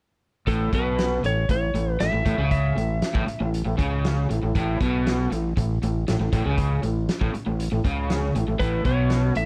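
The recording is dry and close, with little reverb, carrying the feel of a 1970s studio. This is a confident, driving classic rock cut from a longer piece, moving at 118 BPM in a straight 4/4 in A major. A crunchy, double-tracked overdriven guitar plays a bright, picked riff up front from 0.5 to 9.5 seconds, alongside a growling fingered electric bass that is overdriven and played direct and amped. A raw garage drum kit, recorded in a stone room, drives them with hi-hat, a punchy kick and a fat snare, its sound saturated and gritty with a rolled-off top. Over this, a lightly driven lead guitar, dark and compressed with a slightly broken-up edge, carries the picked melody from 0.5 to 3.5 seconds and returns at 8.6 seconds.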